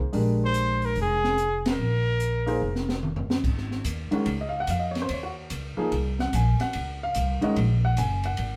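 Modal jazz with a searching, spiritual mood, swung at a lively pace, this short excerpt captures a band playing live together in a stone room with moderate reverb. A woody, gut-strung upright bass sits up front with a thumpy, dark pizzicato tone, joined almost at once by an intimate grand piano whose action noise is audible and by an acoustic drum kit with dark cymbals, a high-tuned snare and a boomy kick. A forceful, punchy trumpet carries the melody from 0.5 to 3.0 seconds, its clear tone marked by light vibrato and scooped notes. The band hits an accent at 1.6 seconds, and a drum fill leads into a shift of harmony at 3.4 seconds, where the music moves from a Bb7 with its third omitted to an Ab9sus4 colour. From there bass, piano and drums carry on as a trio until the cut.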